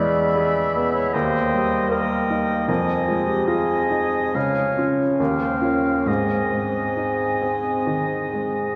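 Bathed in a lush cathedral-like reverb, this passionate romantic excerpt for piano and orchestra moves in a rubato 4/4 at 65-78 BPM in Ab major, with a warm, long-sustaining baby grand piano carrying the melody up front while a clear oboe with light vibrato, a distant, roomy clarinet and a pure, vibrato-tinged silver flute weave second lines above a dark, smooth-topped bassoon accompaniment sitting in the background.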